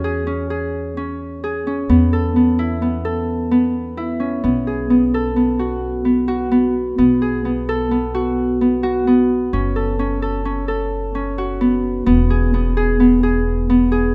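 A ringing, fingerpicked Celtic harp sits up front with playful, shimmering arpeggios over a dark, woody pizzicato upright bass on gut strings in this contemporary chamber piece in a straight 11/8 at 260 BPM in eighths, tuned to A4 = 443 Hz and set in light reverb, a brief cut from a longer work that moves from C#m/E and Esus4 to B5 at 4.4 seconds, then on to F#m and E.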